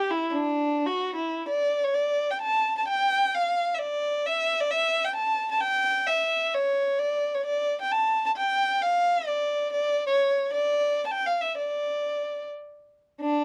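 A three-beat metre with a straight feel carries this festive, proud piece of Mexican folk music, a short passage cut from a longer performance. A single bowed violin plays alone from start to finish, its dark, woody tone sitting up front and touched with vibrato. Its voice stays smooth at the top, moving between D4 and A5. A brief opening phrase gives way at 2.0 seconds to the main passage, which runs until just before the violin stops at 13.4 seconds. Close, detailed microphones capture the lone player in a light reverb.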